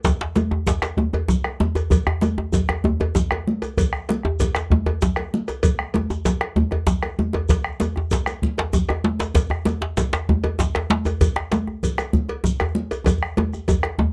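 A driving 12/8 pulse at 129 BPM, felt in dotted quarters, carries this festive West African drum ensemble, cut from a longer piece. A round bombo sits up front beside one tight, cracking djembe, while a second djembe played with soft hands stays in the background, and hard-handed, high-tuned congas add a damped, thick-skinned tone alongside a metallic cowbell and a grainy, mellow shekere. The sound is close and detailed with little reverb, and a drum fill closes out the passage from 13.1 to 14.1 seconds.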